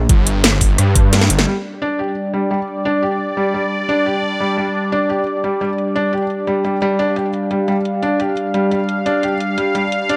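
Light reverb and a close, tape-tinged small-room character frame this dark, futuristic piece of technical drum and bass at 174 BPM in straight 4/4, cut from a longer track. It opens on a drop built on a G5 chord: a thick, detuned unison saw bass with chorus and overdrive sits up front beside a knocking electronic kick and a layered kit of cracking snare, metallic hats, rim clicks and crashes, all filtered low. The kick falls away just after one second, a drum fill leads to a full-band accent at 1.4 seconds, and the bass stops as the second section begins at 1.5 seconds. From there an evolving, airy pad with a noise layer, soft attack and long release holds sustained chords with chorus and sidechain pumping. A felt-muted upright piano, mellow and intimate with audible action noise, plays arpeggios through a low-pass filter and tape echo, pumping with the pad. The kit carries on under a filter sweep to the end.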